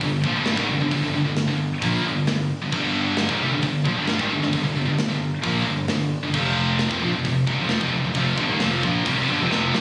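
Epic and relentless, this heavy metal excerpt drives at 133 BPM in a straight 4/4, cut from a longer piece. A scooped, high-gain guitar sits up front with a bright, double-tracked, picked riff under distortion, spanning F2 to Bb3 and moving from a G5 chord to F5 at 6.3 seconds. Beneath it, a fingered electric bass adds a growly, fuzz-laden overdrive in the low register from F1 to Eb2. The tight metal drum kit has an acoustic, big-room character, with glinting cymbals, a medium-tuned snare, a tight kick and hi-hat, capped by a drum fill at 9.5 seconds. The sound, captured on a phone in the room, carries light studio reverb and compression.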